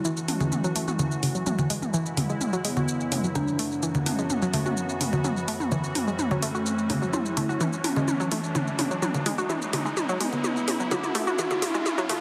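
A driving 127 BPM pulse in straight 4/4 comes from an up-front, overdriven deep house kit of congas, toms, shaker and metallic hi-hats, carrying this hypnotic melodic techno fragment in F# minor through a build-up with a drum fill, a background riser and a filter sweep on the synth lead. A warbly, dusty sawtooth pluck spins arpeggios through dub echo over a bright, morphing wavetable pad and an eerie, inharmonic FM bell, while a smooth, vibrato-tinged lead sings its melody from the back of the mix, and a resonant, ring-modulated drone with moving overtones enters at 0.2 seconds. The chords cycle F#m7, C#m and Bm before closing on B5, all set in a huge ambient reverb and a dense, heavily limited modern master.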